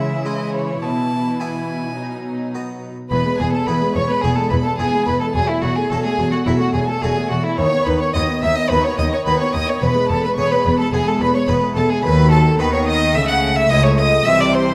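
Set in the wet reverb of a recital hall, this festive, lively passage of a baroque-style concerto movement, cut from a longer piece, puts a focused solo violin up front, its vibrato-laden bowing carrying the melody. Behind it, a close chamber violin section also plays the melody, a smooth symphonic violin section sustains a second line, and an expressive viola section with portamento fills the accompaniment alongside a bright, plucked Flemish-style harpsichord. An even symphonic cello section anchors the bass from the start, joined at 3.1 s by a close, expressive chamber double bass section as the music moves into its second section.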